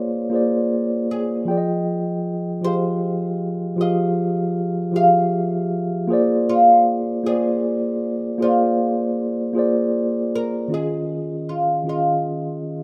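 Set in a slow 6/8 at 52 beats per minute counted in dotted quarters, with a straight feel, this short cut from a longer R&B piece has a yearning, late-night mood. A mellow tine electric piano supplies the accompaniment from start to finish, its clean tone heard through built-in speakers and spanning Eb3 to G5. Over it, a fretless oud carries the melody between F4 and F5, its plectrum-plucked double strings giving a woody, acoustic voice, and both instruments sit up front. The harmony moves from Bb9 to Fm9 and back to Bb9, then shifts to an Eb9sus4 when a new section arrives at 10.7 seconds, running to the close at 12.8 seconds. Light reverb and a small room ambience frame the rough home-demo sound.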